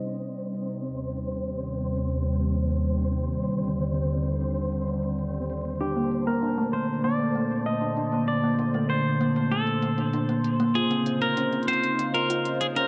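A dim, echo-heavy mix with moderate spring reverb opens this melancholic, intricate IDM fragment at 97 BPM, where a swirling, nasal analog pad with phaser and chorus holds sustained chords up front over a grainy, flickering texture and clicky, overdriven electronic hi-hats set far back under a filter sweep. The bright, twangy clean electric guitar sounds a brief figure at the start and returns at 5.8 seconds with dub echo on its melody, joined there by woody, soft kalimba arpeggios through analog delay. Chords drift from Cm through Eb6 and Bbmaj9 to Dbmaj9.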